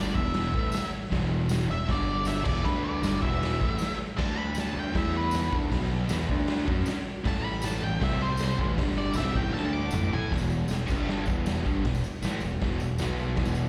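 An octave-fuzz lead guitar with a dark, distorted tone takes a solo over the first 10.3 seconds of this raw, rowdy garage rock excerpt at 156 BPM, riding a double-tracked fuzz guitar riff with slapback echo and a growling, overdriven fingered bass. Up front, a gritty, saturated drum kit with a punchy kick and a rolled-off top plays a fill at 9.5 seconds before the music moves into a new section at 10.3 seconds. A jingly tambourine sits in the background, and the whole performance comes through a venue's PA with recital hall reverb.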